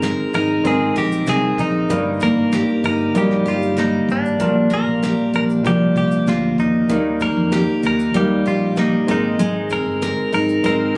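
Acoustic pop excerpt in Eb major at 96 BPM, heartfelt and carefree, where a twangy, clean electric guitar carries the melody over a full-bodied, up-front picked steel-string acoustic guitar, a woody vintage upright piano and a round fretless bass, with a dark brushed kit of kick, snare and shaker sitting in the background, all captured on a phone in a club room with light reverb and compression as the chords move from Abadd9 through Eb/G and Bb6 to Eb.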